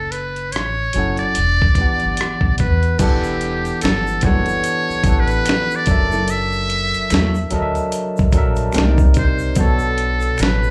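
R&B with a neo-soul lean, this introspective late-night excerpt moves at 73 BPM with a swung sixteenth feel in E dorian, its buzzy metal-muted trumpet up front carrying a breathy, scooped melody with light vibrato over a woody pizzicato upright bass and a gritty, compressed sampler-style kit with a thumpy kick and fat snare. A barky tine electric piano joins at 0.9 seconds, a distant egg shaker with finger snaps and handclaps slips in at 3.0 seconds, and a full-bodied fingerpicked nylon-string guitar sits in the background from 3.8 seconds, finger squeaks and all. The trumpet, piano and guitar carry plate reverb and slapback echo, and the whole thing sounds like a live club gig heard through the venue's PA, drifting through chords like Em11, F#7alt and Cm9.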